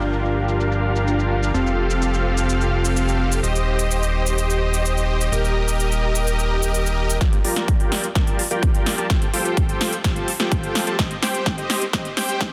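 A dense, heavily limited modern master with light reverb frames this euphoric, powerful stretch of festival progressive house in G minor at 127 BPM, where a huge, detuned sawtooth supersaw riff pumps against the sidechain through filter sweeps and dub echo over Gm7, Fadd9, Cm/Eb and Eb chords, a fat, saturated analog bass pumps beneath it until 7.2 s, and a big-room kit of crisp hi-hats, shaker and a punchy, soft-clipped snare carries on as an up-front, tape-warm electronic kick arrives at 7.2 s for a build-up and drum fill that run to 12.5 s.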